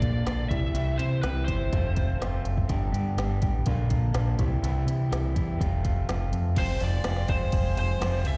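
This upbeat, jangly indie rock cut opens with four parts at once: a twangy, slightly broken-up electric guitar picking a riff through a small old amp, a round, up-front fingered bass, an electronic kit with a soft kick, woody snare and crisp hats, and a lo-fi, overdriven lead guitar carrying the melody. The lead drops out at 2.4 seconds, leaving the riff, bass and drums to cycle through a progression of Bb, C, F and G in a straight four. Both guitars carry a slapback echo, and the bass sits heaviest in the balance. At 6.6 seconds the harmony turns to F minor as the lead guitar returns alongside a moody, detuned sawtooth pad with chorus, holding slow-attack chords deep in the background. The whole performance sounds like a live gig heard through the venue's PA, washed in the reverb of a recital hall.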